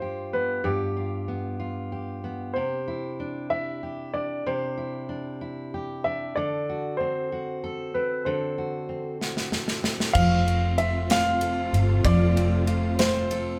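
A moderate room reverb frames this tender, romantic six-eight pop ballad excerpt, where a clear, present baby grand piano carries the melody over a dark, full-bodied fingerpicked steel-string acoustic guitar until a drum fill from a polished, punchy studio kit with bright cymbals arrives at 9.2 seconds, and at 10.2 seconds a round, foam-muted vintage electric bass and a lush, bowed string section with expressive vibrato and portamento join on an F chord.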